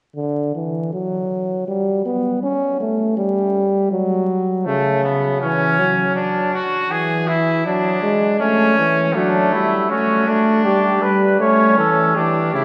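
A close-miked trombone opens this joyful, stately excerpt of an imitative brass canzona in triple time, sounding warm and up front as it lays down the accompaniment from 0.2 seconds. A bright trumpet joins at 4.7 seconds with a second line that sits distant and roomy, and at 9.2 seconds a cornet enters with the melody, its soft attack heard from further back. A long church reverb surrounds the ensemble, and a vinyl crackle runs underneath.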